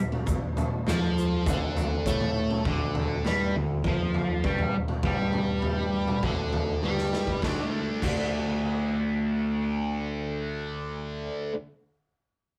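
Psychedelic rock with a hypnotic, trippy mood, moving at 100 BPM in a straight 4/4 in D minor, cut from a longer piece. A raw garage drum kit starts at 0.1 seconds, sitting up front with a punchy kick, a medium-tuned snare, toms and crash cymbal, its saturated, gritty sound colored by a bright stone room that pumps. An egg shaker adds a grainy rattle in the background until 2.2 seconds. At 0.9 seconds a double-tracked fuzz guitar riff arrives up front, its compressed, distorted tone given a phaser sheen, alongside a growling picked electric bass with overdrive. A drum fill from 6.8 seconds leads at 7.4 seconds from the D minor groove onto a D5 chord, and the guitar rings on after the drums stop, all within a rough rehearsal-room recording touched by light reverb.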